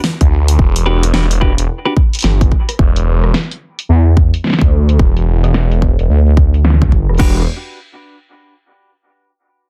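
A dry, dense and heavily limited sound frames this playful, funky glitch hop excerpt in E minor at 109 BPM with a 62% swing on the 16ths, where a punchy, up-front electronic kick and a pop drum kit with a fat snare and low-passed hats and cymbals ride a filter sweep alongside a thick, swirling phased saw bass with tube saturation over an E7(no3) chord, while clean electric guitar stabs with 12-bit sampler grit, sidechain pumping and dub echo appear at 0.9 seconds and return briefly at 7.2 seconds as the harmony moves to Em9.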